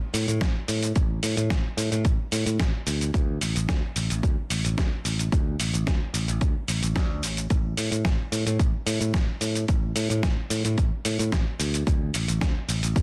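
A dense, heavily limited modern master with lossy compression artefacts and digital ambience frames this short, groovy and sunny nu-disco cut from a longer piece, moving at 110 BPM in a straight 4/4. Up front, a bright, growly picked electric bass holds the low end between A1 and A2 from the start, alongside a gritty, compressed sampler-style soul kit of hi-hat, shaker and medium-tuned snare in small room ambience. From 0.4 seconds a punchy, tape-tinged electronic kick, layered and re-recorded in a large room, joins them through to the end at 13.0 seconds.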